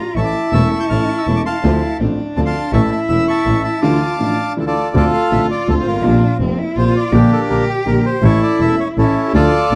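Tango in D minor at 163 BPM in a rubato 3/4, sultry and passionate, this short cut from a longer piece puts a reedy, up-front bandoneon on the melody over a rich, distant bowed cello second line with vibrato and portamento, a boxy grand piano accompaniment, a clear, focused bowed double bass, and very quiet, smooth-topped string section stabs that play until 4.7 seconds and return at 9.3 seconds, all in a dry, close 1970s-style small-room sound moving through Dm7, Bbsus2 and Gm/Bb before settling on A.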